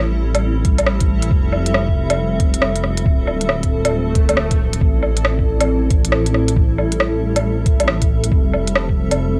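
A dark, detuned saw bass stands out at the front, deep and rumbling with a beating, sustained low end between D1 and A1, carrying sidechain pumping across the whole 9.4 seconds. This is a wistful, nocturnal future garage passage at 137 BPM in A minor, cut from a longer piece, with a swung 4/4 groove. Above the bass, a granular cloud pad holds blurred, evolving chords with a slow attack and long release, its bright, cloudy tone bathed in built-in reverb, cassette tape colour and sidechain pumping as it moves through Am7, Fmaj9 and Dm9. An organic electronic kit of crisp hi-hats, rim clicks and woodblock sits up front from 0.3 seconds, joined at 0.7 seconds by a muffled, thumpy, pitched-down kick, both carrying a tape character. A short electronic swell arrives at 4.1 seconds, and the whole has the light reverb and homespun feel of a cassette home recording.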